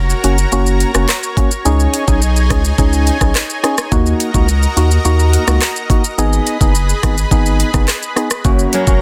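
A lush, detuned pad built from sawtooth and square waves opens this bouncy, tough dancehall excerpt, holding bright, slowly blooming chords with a chorus shimmer, while a saturated sine sub bass sits thick and deep up front. An electronic island pop kit joins at once with a knocking kick, metallic hi-hats, handclaps, rim clicks and shaker, all up front. A hollow, organ-like stab, blending sine and triangle tones over a noise layer, adds dark, percussive accompaniment that strikes fast, decays and carries its own chorus sheen. The chords move from F# through C#sus2 and D#m to G#m before returning to F#, and at 8.4 seconds a fingerpicked steel-string acoustic guitar slips in with warm arpeggios. The digital ambience and dense, heavily limited master give the track a loud, modern polish.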